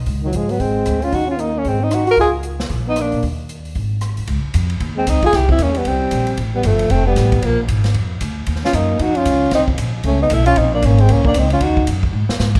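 A brisk swung 4/4 pulse from woody pizzicato upright bass and an airy, polished drum kit with a punchy kick carries this sophisticated small-group jazz passage, where a whispered, intimate tenor saxophone with scooped notes and vibrato sings the melody up front over a breathy trombone second line, through shifting jazz harmonies in light reverb, until a drum fill at 12.1 seconds.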